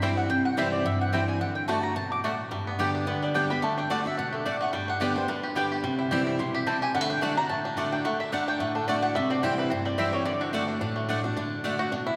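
Bluegrass at a brisk 217 BPM with a lightly swung feel in D mixolydian, this joyful, virtuosic excerpt sets a twangy, fingerpicked banjo and a woody, double-strung mandolin on melody, while a bright, full-bodied dreadnought guitar sits up front with picked accompaniment and a second, round-toned mandolin adds stabs in the background. The harmony moves between C, D and G, with the mandolin melody dropping out at 10.5 seconds as the others carry on to about 12 seconds. A long cathedral reverb places the band in a resonant church or concert hall.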